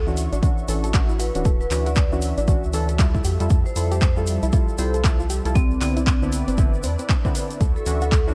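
Dark, warm production with little reverb frames this relaxed, warm deep house excerpt at 117 BPM in D major with swung sixteenths, where a bright, ringing hard-mallet vibraphone melody with dub echo floats over a smooth detuned analog pad, a round, deep bass, a soft nasal pluck arpeggio with delay, mellow warbling chord stabs, a grainy tube shaker in the background, punchy overdriven analog handclaps and hi-hat, and an up-front overdriven kick entering at 0.4 seconds, with the pad, bass, pluck and stabs pumping to the sidechain as the chords move from Dmaj9 through Fmaj9 and Cmaj9.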